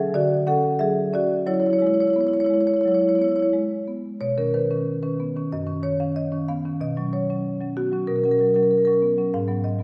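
Rubato in 4/4, moving between 86 and 97 BPM, this short cut from a longer contemporary classical piece features a solo marimba played with medium mallets, its woody padauk bars spanning F#2 to F#5 with a boxy, up-front presence. The playful, warm mood moves from Dmaj7 and F#9sus4 into a new section at 4.2 seconds built on Badd9 and Bmaj7sus2, arriving on G#m7 at 9.3 seconds. The recording sits in a wet scoring-stage reverb.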